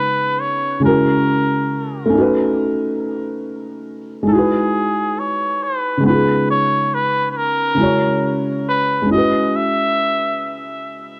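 A swung sixteenth-note feel in 4/4 sets up this cosy, dreamy lo-fi hip hop fragment, cut from a longer piece. A felt-muted upright piano carries the accompaniment, its boxy, dark tone sitting up front with audible action noise and the thick felt softening every note under a low-pass filter. Over it, a cup-muted trumpet plays a solo melody in a jazz style, veiled and breathy with a soft attack and light vibrato, shaded by its own low-pass filter and a tape echo. The harmony drifts through lush extended chords such as C#9, F#7/C#, B9 and Emaj9 before settling on E6. The trumpet falls silent at 10.8 seconds, leaving the piano to ring on until 11.2 seconds. A light, small-room reverb and a cassette tape sheen give the recording an intimate, hazy character.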